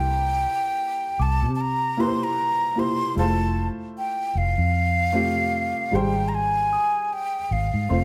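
Smooth and romantic, this short passage of lush 1970s-style soul moves with a gently swung sixteenth-note feel over a chord progression from C7 to Fmaj7 and then Abmaj7. A breathy jazz flute carries the melody up front, its airy tone shaped by vibrato and lifted highs as it sings in a high register. Beneath it, a dark baby grand piano offers mellow, intimate accompaniment with short sustain and audible key action noise. A vintage muted fingered electric bass sits close as well, round and punchy with a foam-muted thump. At 1.2 seconds a celesta slips in far behind the band, adding a delicate, bell-like sparkle near the top. The players sound as if they share one stone room, with a moderate reverb lending the performance a live, unified glow.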